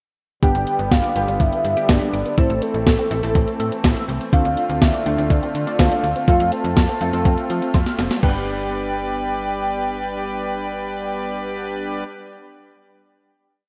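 A straight drum-machine beat at 123 BPM in 4/4 drives this short, upbeat yet wistful synth-pop piece in G mixolydian: the clean 12-bit drum machine sits up front with a thumpy kick, medium-tuned snare, hi-hat and crash, plays a fill from 7.7 to 8.2 seconds, then stops as the closing G chord rings out. A snappy, metallic FM bass and a punchy, funky sawtooth polysynth playing syncopated triads with chorus ride over chords of G, Am, Dm7 and F, while a very quiet, squelchy blip pluck runs arpeggios in threes and a shimmering pipe organ celeste holds soft, romantic pad chords. On top, a round, dark octave-layered lead with chorus, tremolo and vibrato sings a motif-based melody, all set in a lush hall reverb within a rough home-demo mix.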